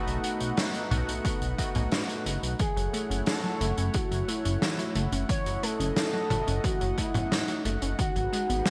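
Bright, 1980s-style digital production bathes this nostalgic, nocturnal synthwave fragment in lush hall reverb, as a shimmering pulse-width pad pumps under sidechain and glossy chorused polysynth stabs with digital delay open the piece before falling away at 2.6 seconds. A mellow chorused synth bass sits up front beside a distant, roomy indie drum kit of hi-hat, snare and toms treated with gated reverb, while an overdriven, punchy electronic kick joins at 1.2 seconds. From 2.6 seconds a smooth, expressive synth lead with vibrato and subtle chorus carries the melody over detuned unison pluck arpeggios coloured by cassette tape and delay, the chords moving from B7 to F#m7 and G#m7 before a very quiet riser appears at the close.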